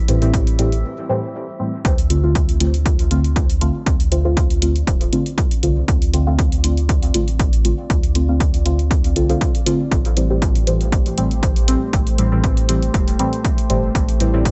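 A deep, warbling chord stab sits up front in this hypnotic, cavernous dub techno excerpt, its detuned, chorused tone passing through a phaser and a dub echo as each hit decays. Beneath it, a round sine sub bass with tube saturation holds the low end, while a punchy, tape-flavoured analog kick drives the swung groove alongside a quieter electronic hi-hat. An eerie, metallic FM drone hangs in the background only until 0.8 s, giving way to a short break. A moody, wave-folded ambient pad with ring modulation and built-in reverb drifts in at 1.4 s behind the mix, and the pad, bass and stabs all pump with sidechain compression. The harmony moves from Am7 to Dm7 and returns to Am7 at 9.9 s, all in a dry, shadowy mix with the top end rolled off above 7.9 kHz.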